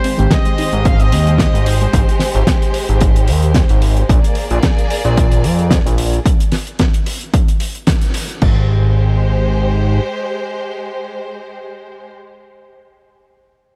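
Light reverb and a small-room ambience frame this feel-good, groovy nu-disco passage at 111 BPM in Ab lydian, swung on the sixteenths over Abmaj7 and Bb7 chords. A punchy, overdriven electronic kick and a thick, sawtooth analog bass sit up front, the bass and the lush, vibrato-rich violin section both pumping to the sidechain, while a damped 70s kit adds a dry, dark snare, hi-hat and crash, with a band accent at 7.9 seconds. A clear trumpet section and a reedy, slightly out-of-tune electric piano, both carrying analog delay, and a very quiet, round pluck arpeggio sound only in the opening moments; the drums stop at 8.5 seconds and the strings hold on until 12.1 seconds.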